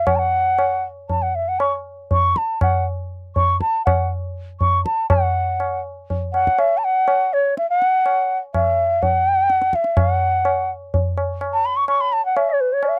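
A dry, close 1970s-style studio sound frames this meditative, solemn fragment of Hindustani classical music in 5/4, tuned to A4 = 444 Hz and gathering pace from 117 to 128 BPM, as an up-front bamboo bansuri with a pure tone, soft attack, vibrato and rolled-off highs carries the melody from B4 to C#6 over low-tuned, ringing tabla that enters at 0.1 s, with a new section arriving at 5.1 s.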